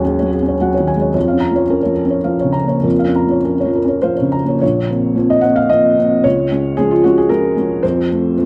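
Neoclassical minimalist piano in 3/4 with a rubato feel, moving between 97 and 115 BPM, this wistful, melancholic excerpt features a felt-muted upright piano playing solo from 0.0 to 8.5 seconds, spanning Bb1 to Bb5 with a touch of tape echo. The piano sits up front with a soft, boxy, intimate tone and audible action noise, set in a wet studio reverb within a dark production. The harmony opens on Ab7sus4/Eb and Db6/F before shifting at 4.6 seconds through Bbmadd9 and Db to F, tuned slightly sharp at A4 = 441 Hz.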